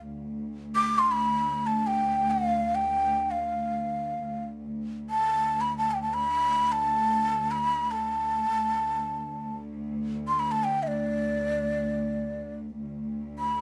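In free time, this longing, hypnotic Turkish makam piece in D huseyni opens on a low D drone from a bowed cello section, soft-attacked and intimate with light vibrato. At 0.8 seconds a breathy, end-blown ney enters up front, carrying the melody between D5 and D6 with a reedy, warm vibrato. The ensemble plays live together in one room with light reverb, and the recording is cut from a longer piece.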